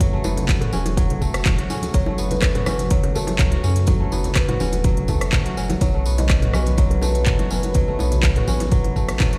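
A deep electronic kick and a crisp afro-pop kit of handclaps, hi-hat, rim click and toms open this spiritual, warm afro house excerpt at 124 BPM in F# dorian, with a lightly swung feel and harmony that moves from F#m to B at 5.8 seconds. A fingerpicked, ringing kora plays arpeggios and a woody kalimba carries the melody in the background, both through tape echo, while a round, nasal analog bass and a smooth, detuned vintage pad with chorus pump against the kick. Soft-handed congas, jingly tambourine and tight, high-tuned bongos entering at 0.2 seconds fill out the percussion, all heard as if played on a big sound system in a bare room with a large studio reverb.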